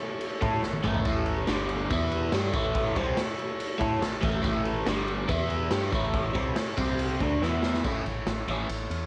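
A buzzy, vintage combo organ holds sustained chords in the background as a punchy, up-front garage drum kit in a bright stone room opens this swaggering, raw garage rock fragment, joined at 0.4 seconds by a picked, double-tracked overdriven electric guitar riff with phaser and a hollow, percussive FM bass with overdrive, the drums then slipping in a quick fill, the organ breaking out with its own fill at 3.8 seconds before another drum fill leads into a new section at 7.8 seconds, all heard through the small-room ambience of a home cassette recording.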